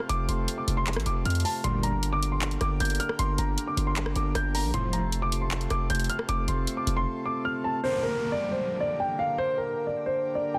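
Dark and eerie, this half-time trap excerpt sets a mellow concert grand piano melody with tape echo over reedy, breathing harmonium chords, while a saturated, aggressive 808-style bass and a trap kit of bright hats, handclaps and rim clicks drive the first seven seconds, a fat detuned polysynth stabs twice, and a downlifter sweeps in at 7.8 seconds beneath a dense, heavily limited master.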